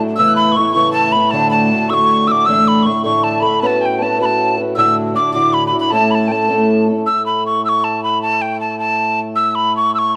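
Lively and cheerful, this celtic folk excerpt moves at 104 BPM in a straight 6/8 in A major. A breathy, close-miked mid whistle leads up front with a soft attack and straight tone, while a tin whistle adds an airy second line with vibrato and crisp chiff in the background until 6.9 s. Beneath them, a fingerpicked twelve-string acoustic guitar gives shimmering, octave-doubled, boxy parlour accompaniment through chords such as Aadd9, Asus4 and Bsus2 until 7.6 s, and a reedy, nasal hand-pumped harmonium holds a breathing drone to the end at 10.2 s, all set in light studio reverb.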